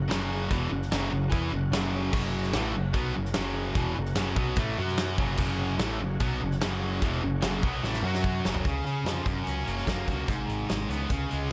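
Set in a small room with light reverb, this swaggering, sunny classic rock excerpt in F# major drives along at 147 BPM, as a cranked stack guitar and a tight distorted guitar play bright picked riffs over a growling overdriven bass and a punchy, up-front acoustic drum kit, while a very quiet, gritty tonewheel organ with slow rotary and key click holds sustained chords until 8.6 s, as a drum fill from 7.8 s ends and the harmony shifts from F# to C#, back to F#, then G#m.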